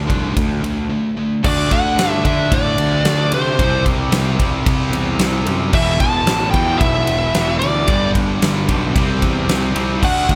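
Heavy and menacing, this hard rock excerpt at 112 BPM in straight 4/4 opens with a sludgy distorted guitar, a high-gain guitar riffing in the background and a growly fuzz bass, joined at 0.1 seconds by an up-front arena drum kit with bright cymbals, a fat snare and punchy kick, before a double-tracked overdriven rhythm guitar enters at 1.4 seconds and a dark, smooth lead guitar with tape echo carries the melody from 1.5 seconds over chords moving from D to C, E5 and G in a light reverb.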